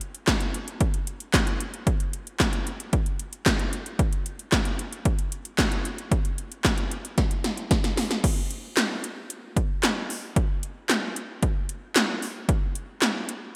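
A straight 4/4 pop beat drives along at 113 BPM, carried entirely by an electronic drum kit with an analog character. The kit sits up front and is overdriven, with a punchy kick, a gated snare, metallic hi-hats, handclaps and a crash cymbal. The clap and hats carry a short room sound, while a lush hall reverb with a 2.9-second decay surrounds the whole kit in a bright 1980s-style digital production. The mood is melancholic yet driving, and a drum fill from 7.2 to 8.2 seconds leads into a new section at 8.2 seconds. The drums play from the start until 13.4 seconds in this excerpt, which is cut from a longer piece.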